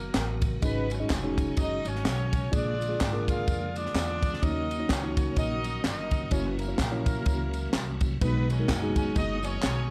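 A crisp, airy fusion drum kit with a punchy kick, high-tuned snare and dark ride cymbal drives this fervent yet solemn swung gospel excerpt, as a distant, mellow horn section carries the melody in octaves with light vibrato over woody pizzicato upright bass, a clean tine electric piano, a piping, lightly overdriven tonewheel organ with key click and fast rotary speaker in the background, and far-off group handclaps and tambourine, all under light reverb.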